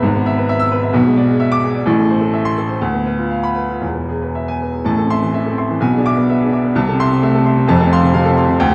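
An open, long-sustaining baby grand piano plays alone and up front from the very start, ranging from E1 to E6 in an agitated, passionate virtuoso classical study in 2/4 with a pliant rubato feel, its chords moving from E/G# through Am and E before a second phrase at 4.9 seconds reaches an F chord at 7.7 seconds, set in a wet recital-hall reverb and a dark, warm production in this brief cut from a longer piece.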